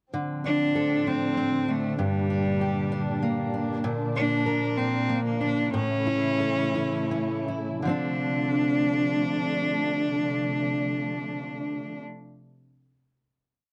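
A six-eight pop ballad in D minor with an aching, dramatic mood, moving at a slow 52-65 BPM and slowing down from 3.8 to 7.9 seconds before settling on a final Dm7 chord held from 7.9 seconds. A fingerpicked steel-string acoustic guitar plays a rolling accompaniment up front, with audible finger squeak, while a dark, lush studio string section sustains soft-attacked bowed chords beneath it. From 0.5 seconds a clear, smooth solo cello carries the motif-based melody in song-like phrases with vibrato, all captured in a dry, close 1970s-style studio sound with modest booth ambience.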